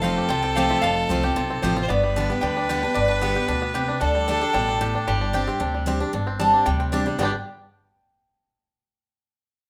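Opening together at a driving 226 BPM in G mixolydian, a metallic, nasal lap resonator guitar played with slide and fingerpicks carries the virtuosic bluegrass melody over a biting, intense bowed fiddle second line with light vibrato that stops at 6.0 seconds, a bright, full-bodied jumbo steel-string acoustic guitar giving picked accompaniment up front, twangy, percussive banjo arpeggios and a woody pizzicato upright bass, set in a moderate studio reverb as the chords move from F through G, Dsus4 and Gsus4 back to G.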